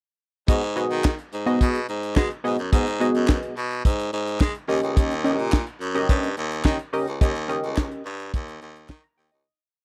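Funky and late-night, this short, complete piece of early-eighties boogie funk moves on a straight 4/4 groove. A tight funk drum kit sits up front with a four-on-the-floor boogie beat, its high-tuned snare layered with handclaps over a tight kick and hi-hat, all sounding natural and acoustic in a small room. Carrying the bass role, a growling baritone saxophone plays a fat syncopated boogie bass line with slides and vibrato, its tone raspy and gritty. Above it, a funky polysynth comp built on sawtooth and triangle waves with a sub octave throws punchy, filter-plucked chord stabs in drop2 voicing, dark and touched with chorus, adding short fills. The harmony shifts from G#m7 to D#7 at 4.7 seconds, and the whole verse fades out from 7.2 seconds in a dry, close, 1970s-style studio sound.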